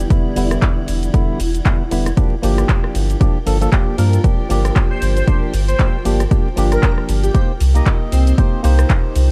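Hollow, percussive organ-like stabs with tape echo open this deep, moody house excerpt over a round sub bass pumping to the sidechain, a punchy analog drum machine of handclaps, hi-hat, ride cymbal, rim click and shaker on swung 16ths, an up-front electronic kick from 0.1 s and a blurred granular cloud pad in the background, while an airy, dreamy detuned lead with vibrato and chorus sings from 4.9 s to 8.3 s in a dry mix carrying vinyl crackle.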